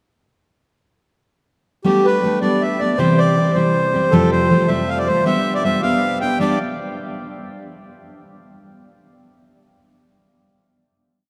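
Set in 6/8 at 106 BPM with a straight feel, this brief, cheerful Celtic folk piece in G mixolydian opens at 1.8 seconds with a full-bodied, fingerpicked steel-string acoustic guitar playing open chord shapes through Gadd9, C, Fadd9 and G, its fresh strings and finger squeak up front. A reedy single-reed accordion with dry tuning enters at 1.9 seconds, carrying a bright, motif-based melody of song-like phrases. The piece sits in a vast, echoing cathedral space before settling on a final chord at 6.4 seconds.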